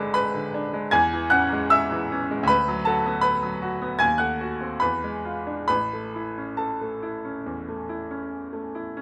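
A clear, smooth grand piano with a vintage tone and short sustain sits up front in light reverb, playing a passionate yet hopeful romantic classical character piece in A major at a rubato 66-80 BPM in 4/4, spanning G#1 to G#6 as its harmony moves through diminished and minor chords to an E7b9 before settling on A at 5.7 seconds in this 9-second fragment cut from a longer work.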